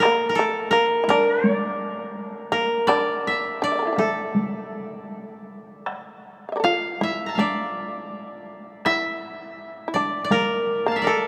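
A cavernous, cathedral-like reverb with a long decay surrounds this brief fragment of Japanese traditional chamber music, cut from a longer piece. The mood is austere and calm, and the pulse in four is loose and uneven, pushed and pulled in a rubato feel. Up front, the koto carries the melody with a dry, woody tone, plucked with fingerpicks and sounding through to the end at 11.3 seconds. Just beneath it, the fretless shamisen adds a second line from 0.1 seconds, mellow yet powerful, its plectrum attack percussive and buzzing. Further back, a taiko ensemble struck with hard sticks gives a vintage, band-limited thud before it drops away at 10.5 seconds.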